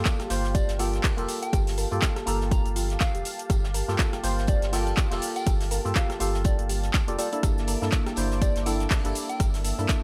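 Digital ambience surrounds this hypnotic, deep deep-house excerpt at 122 BPM in G minor with a swung 16th-note feel, as an up-front overdriven electronic kick and an overdriven deep house kit with metallic hats, handclaps, cabasa and rim click drive beneath a round, sine sub bass with tube saturation, hollow organ stabs with lush chorus and delay, a smooth detuned sawtooth pad, dark pluck arpeggios, a warbling vintage FM lead melody and a dry, warm soul kit with fat snare and tambourine in the background, with the pad, bass, stabs and pluck all pumping under sidechain while Gm9 gives way to C13/G at 7.4 s.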